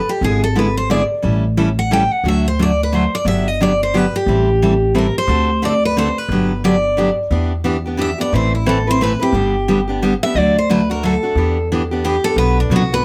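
This excerpt from a longer piece opens with a picked steel-string acoustic guitar carrying the melody, bright and full-bodied, with a second picked guitar and a pizzicato upright bass entering at 0.2 seconds. It is playful, swinging acoustic string swing in the manouche style, moving at a brisk 178 BPM in 3/4 with a lilting swing on the eighth notes, in G major. The lead guitar's solo runs through two passes of the same section, the second beginning at 7.3 seconds, while the accompanying guitar plays the chords with an audible finger squeak and a warm tone. The bass, woody and thumpy from its gut strings, holds down the low end, with all three parts sitting up front in a modest small room. Along the way the harmony moves through chords such as E7/G#, A7, Gmaj7 and Am7 before closing the second pass on Em7 and Bm.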